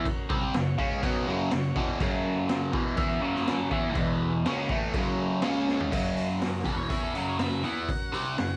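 A dry, gritty home recording on cassette, with little reverb, opens this brief, rowdy garage rock cut from a longer piece. It moves at 123 BPM in a straight 4/4 in F# mixolydian. A bright, crunchy overdriven guitar, double-tracked and up front with a phaser, drives the riff over F#, E5 and C#5 chords. A raw drum kit in a small room, with a boomy kick, a medium-tuned snare, hi-hat, toms and crash, sounds saturated with a rolled-off top, while a vintage combo organ holds buzzy, lightly vibrato chords very quietly beneath. After a drum fill at 5.7 seconds, the music shifts to a new section at 5.9 seconds. A dark octave-fuzz lead guitar enters at 6.6 seconds with a distorted solo melody.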